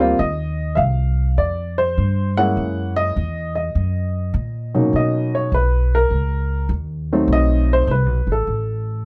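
Playful and warm, this brief jazz piano trio fragment swings its eighth notes at 101 BPM in 4/4, cut from a longer piece. A dark, mellow baby grand carries the melody with an intimate, natural tone, short sustain and audible action noise. A woody, growly pizzicato upright bass with a thumpy attack sits up front beside it, with harmony moving from Eb69 and Gb7 to Bmaj9 and B7b9 as the piano takes a solo at 4.9 s under light reverb.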